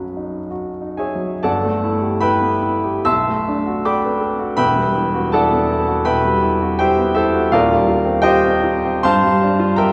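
A clear, intimate baby grand piano plays alone throughout this dreamy, luminous impressionist classical excerpt, its long sustain and natural tone carrying audible action noise as it sits up front. The rubato playing drifts through lush harmonies from G6/9 and Bm7 to Em(add9), then shifts at 7.5 seconds to a darker Eb6/9 before settling on Gm7, with the instrument tuned slightly below standard pitch. A wet concert hall reverb with a 2.2-second decay places the listener further back in the room.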